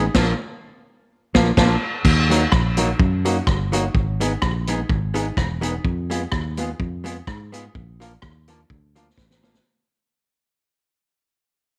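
Cut from a longer piece and set in a lightly reverberant studio room, this energetic, mischievous ska at 126 BPM in Eb harmonic minor opens with a band accent before a fade-out from 2.1 seconds, as a clean, compressed hollow-body archtop guitar picks the chords over a round, foam-muted fingered electric bass and an up-front vintage drum kit with dark cymbals, tight kick, rim clicks and slapback echo that lands a drum fill at 9.2 seconds.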